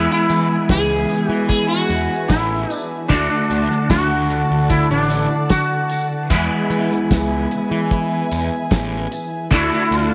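A buzzing, shimmering sitar with tape echo carries the melody in this trippy, hazy psychedelic rock excerpt at 75 BPM in E mixolydian, set over a bright, twangy, double-tracked twelve-string electric guitar riff through a rotary speaker, a fuzz-laden overdriven picked bass, and a soft-edged sul tasto string section holding sustained chords, joined from 0.3 s by a dry, thuddy cloth-damped drum kit with a fat snare and a distant, jingly tambourine, as the harmony moves between E and D in a small room.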